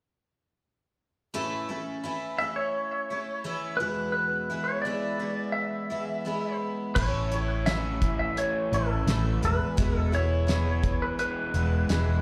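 A nostalgic, open-road feel runs through this short folk rock and heartland rock passage, which sounds like a live club gig heard through the venue's PA, with small-room ambience and club reverb around it. A shimmering, octave-doubled twelve-string acoustic guitar opens at 1.3 seconds, its bright, jumbo-bodied picking carrying audible finger squeak as it moves from A to E. At 2.4 seconds a clean, twangy lap steel guitar takes the melody up front, its compressed slide tone treated with slapback echo and digital delay. At 7.0 seconds the band joins in. A crunchy, double-tracked overdriven guitar plays a riff with slapback echo, a round, hollow-body bass sits prominently below, and a damped 70s drum kit adds a fat snare, tight kick, hi-hat and dark crash cymbals. The drums sound dry yet airy and polished, giving the second half a fuller push as the chords return to A and E.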